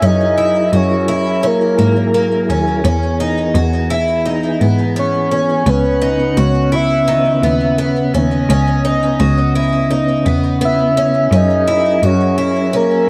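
Haunting and hazy, this dream pop passage drifts at 85 BPM in a straight 4/4, set in C# dorian and cut from a longer piece. A soft, octave-layered synth lead carries the melody throughout, its round, full tone blending triangle, sawtooth and sine with a sub octave, softened by chorus and a digital delay. Beneath it, a mellow tonewheel organ holds sustained chords with a flute-like, clean voice, colored by chorus vibrato and a fast rotary speaker. A picked twelve-string acoustic guitar spins shimmering, octave-doubled arpeggios with a boxy, archtop character, touched by subtle chorus and delay. A single bowed cello plays the bass line with light vibrato, an airy sul tasto sound and an intimate, close presence, until it stops at 13.0 seconds. The chords move from F#9 to Emaj7 and C#m9 before returning to F#9 at 11.3 seconds, all wrapped in a moderate plate reverb and a dark, warm production.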